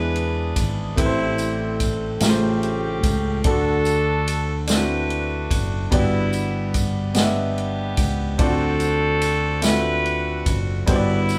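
A slow 6/8 pulse at 48 BPM, felt in dotted quarters, carries this uplifting gospel excerpt in G major. A swinging big-band drum kit enters at 0.2 s with boomy kick, ride cymbal and medium-tuned snare set back in a distant, roomy space, and a jingly tambourine joins quietly in the background at 0.6 s. A bright, vintage saxophone section carries the melody over an up-front concert grand piano with deep bass and a punchy fingered electric bass, moving through E7, Am7, A7alt and D before settling onto Gmaj7, D7 and Gmaj7, all captured live in one room with moderate studio reverb.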